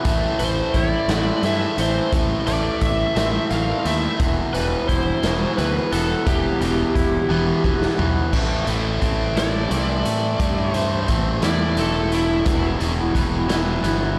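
Dark and brooding, this quiet-loud alternative rock piece in 6/8 moves between A minor and E minor chords. An up-front, compressed overdriven guitar riff and a gritty garage drum kit with a punchy kick carry the weight, while a growly fuzz bass sits beneath and a clean, twangy guitar picks arpeggios in the background, both guitars touched with slapback echo. After a drum fill at 7.3 seconds, the biting lead guitar steps forward into a solo from 8.3 seconds, all set in a big arena sound with concert hall reverb.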